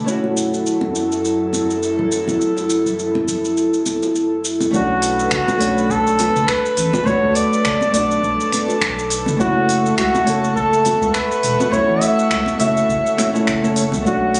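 A woody, fingerpicked nylon-string guitar under a filter sweep and an airy, breathy, detuned pad open this relaxed, wistful sunset chillout excerpt in B minor at 103 BPM with a 16th-note swing. They are joined by a crisp, overdriven R&B kit of finger snaps, hi-hat and shaker, and by hard-handed bongos and congas in the background. A round, dark analog bass and a deep electronic kick arrive at 4.7 seconds, and an up-front flugelhorn takes a smooth jazz solo with light vibrato from 4.8 seconds, all heard as if captured on a phone in a small club room.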